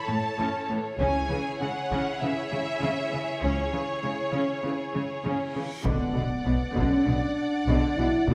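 A moderate scoring-stage reverb with a touch of small-room ambience surrounds this dark, epic orchestral film-score passage, cut from a longer piece in a straight 4/4. A clear, intense violin section carries the melody from a distant place in the hall, while a second, focused violin line and a smooth, close viola section fill in beneath with vibrato, all bowed as full ensembles. A rich cello section holds the bass from the start, joined at 1.0 seconds by a distant double bass section with light vibrato and by a taiko ensemble struck with heavy sticks, its sound close and dry. At 5.4 seconds a huge, bright reverse cymbal sounds in the background and gives way to an impact, as the harmony shifts from A and C#m to Bm. The taiko return at 5.8 seconds, and from 5.9 seconds a dark French horn section with soft attacks sits up front on sustained chords, lending the closing bars a weighty, brooding grandeur.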